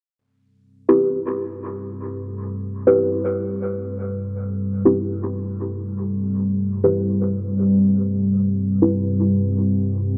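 A nasal, deep chord stab with dub echo, phaser and a filter sweep opens this hazy, cavernous free-time techno passage in A minor at 0.9 seconds, joined at 1.4 seconds by a moody, detuned sawtooth pad holding a dark Am7 under vintage 12-bit sampler grit and its own sweeping filter, both sitting up front in a lush hall reverb on a dry, gritty hardware recording.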